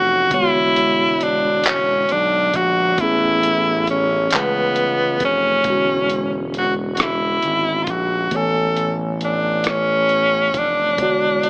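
An edgy, forceful tenor saxophone opens this slow, tender R&B excerpt in a straight 6/8 at 45 BPM, playing a jazz-style solo melody up front with vibrato, alongside a mellow, clean tine electric piano voiced through built-in speakers. The drums come in at 0.3 seconds, a dusty, sampler-style soul kit that is compressed and gritty, with a thumpy kick, rim clicks, hi-hat and handclaps carrying a tape-warm character. Underneath, a smooth gliding synth bass blends sawtooth and triangle tones with wave-folding, sustaining its low notes with vibrato and portamento. The harmony in A major rocks between E13 and Amaj9 across two sections, the second beginning at 5.6 seconds. Light reverb and an AM radio coloring give the whole recording a warm, lo-fi haze.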